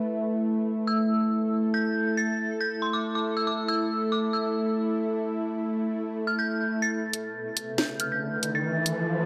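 A wet digital room reverb gives this short cut from a longer deep dubstep piece a dark, heavy atmosphere at 139 BPM in a half-time 4/4 feel. From the opening, a tense, string-like bowed drone holds sustained chords with a slow attack, vibrato and its own built-in reverb, its detuned sawtooth unison and noise layer sounding bright under a filter sweep. At 0.9 seconds an eerie synth bell joins up front, carrying an inharmonic FM melody high in the register with a fast attack, a decaying tone and a long release, coloured by chorus, phaser, a low-pass filter and dub echo. The second section opens at 6.9 seconds as a build-up, with a filter sweep moving across the bell. A layered electronic garage kit of hi-hat and cracking snare arrives at 7.1 seconds, and an electronic riser pushes toward the close.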